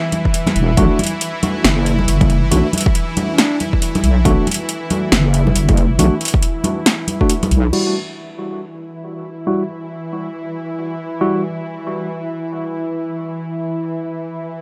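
A dry, gritty recording of heavy, meditative deep dubstep in a swung half-time feel, where an overdriven electronic kick, a punchy deep house kit with metallic hats, ringing congas soaked in dub echo and a saturated, chorused wobble bass drive the opening until about 7.7 seconds, a worn, slightly out-of-tune tine electric piano plays stabs through a combo amp and then takes a filter sweep, a mellow duduk makes a brief background appearance at 3.3 seconds, and a tense, nasal, string-like drone sustains throughout.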